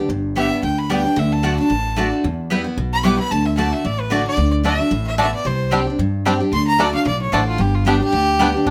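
This short excerpt of a longer bluegrass piece opens with a full-bodied picked steel-string acoustic guitar laying down accompaniment, joined almost at once by a woody pizzicato upright bass holding down the low end. By 0.4 seconds a clear, nasal fiddle with light vibrato and an airy bow takes the lead as a solo line, while a round, double-strung mandolin adds picked stabs. The tune is rustic and lively, racing at 224 BPM in 4/4 with a gentle swing on the eighth notes, moving through G, D, Em, Csus2 and back to G in G major. At 4.7 seconds a twangy, percussive bluegrass banjo played with fingerpicks enters with arpeggios, thickening the texture for the final stretch. The guitar, bass and fiddle sit up front in a close, detailed recording with light reverb.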